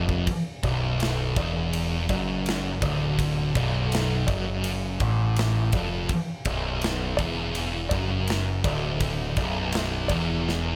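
Heavy and ominous, this stoner and doom metal excerpt moves at a straight 82 BPM in 4/4, anchored on B minor. Two thick fuzz guitars grind out the riff low in the register from the start, their distorted, picked tone sitting back in the mix with a warm weight. Up front, a growling picked electric bass digs even deeper, its overdriven, bright, amped sound cutting through beneath the guitars. A big rock drum kit drives the piece with a punchy kick, a medium-tuned snare and bright ride cymbal, captured with an airy, polished big-room character and forward placement. Drum fills mark the opening and arrive again at 10.5 seconds, while the overall sound stays dry and close.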